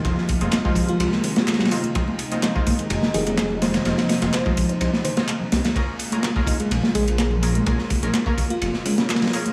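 A straight 126 BPM breakbeat groove in Bb minor rolls on a gritty, swaggering feel, driven by a crunchy, saturated acoustic kit of tight kick, medium-tuned snare and dark ride sitting up front, with an overdriven analog drum machine adding handclaps and hi-hat and soft, very quiet congas entering at 0.3 seconds. A deep, rumbling detuned saw bass holds the low end while a reedy, lightly overdriven electric piano riff with harmonic tremolo and dub echo sits in the background, and bold, nasal orchestra-hit-like synth stabs punch through with built-in reverb and echo. A swirling, phased analog pad pumps softly underneath on sustained chords moving from Fm7 to Bbm7 at 5.8 seconds, and a sparkling, bell-like FM electric piano melody with chorus, tremolo and a small-speaker tone drifts in at 0.9 seconds, all set in a light small-room reverb in this short cut from a longer piece.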